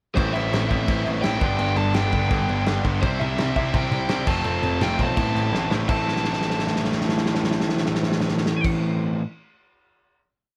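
Punk rock at 168 BPM in A minor, aggressive and angry, where a loose, up-front indie drum kit with a punchy kick and dark cymbals drives a fast groove under three distorted guitars (a bright one and a sludgy one pumping eighth-note barre chords in the background, plus a very quiet double-tracked one ringing chords), while a clear concert grand piano plays deep eighth-note bass and a warm overdriven lead guitar states a motif-based melody, the short whole piece racing through a chorus over Am, G, C and F before drum fills carry it into a final chord at 5.9 seconds, in a dry setting with little reverb.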